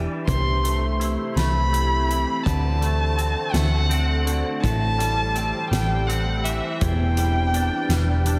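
A muted violin, played con sordino by a single bowed player, carries the melody up front from 0.3 seconds, its veiled, dark tone colored with vibrato and a touch of delay. This is a soaring, cinematic post-rock excerpt in C lydian at 55 BPM in 6/8, cut from a longer piece and moving through C6, D7, Am7 and Em7. From the opening, a twangy, scooped electric guitar spins clean, fingered arpeggios through ensemble chorus and delay, while a glassy FM pad with a slow attack and long release holds ethereal sustained chords beneath. A hollow-body short-scale picked electric bass sits round and amped near the front, anchoring the low end. A soft-mallet drum kit joins at 0.3 seconds with hi-hat, a boomy kick and a fat snare heard in a big room, and the whole dreamy mix is soaked in a lush hall reverb.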